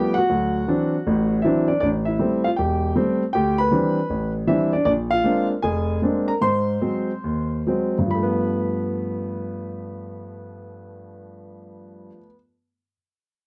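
A natural-sounding, up-front concert grand piano with a deep bass plays this sophisticated, swinging solo jazz fragment in G mixolydian at 134-158 BPM, moving through rich chords from D9 and Am7 to Bb9, Ab7 and a closing G9, easing into a slowdown between 4.9 and 8.1 seconds, all captured in a dry, close 1970s-style studio sound with light reverb and cut from a longer piece.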